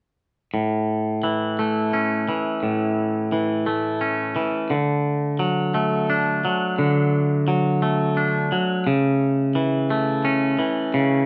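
Recorded as a band playing live in one room, with a moderate studio reverb and a rounded top end, this soaring, hopeful rock excerpt in A major moves at 87 BPM in 3/4 as a clean, twangy, fingered electric guitar sits up front playing arpeggios from 0.5 to 11.3 seconds over A, D and A/C# chords.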